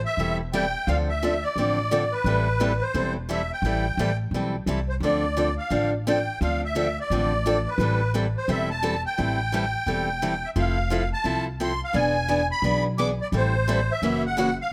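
A woody, gut-strung upright bass opens this virtuosic, swinging snippet of acoustic string swing, joined almost at once by a shimmering, reedy musette accordion carrying the melody through tape echo and a bright, boxy picked parlour guitar comping over minor-key changes that move through E7 back to Am7 before a lift to F#7, all up front in light reverb.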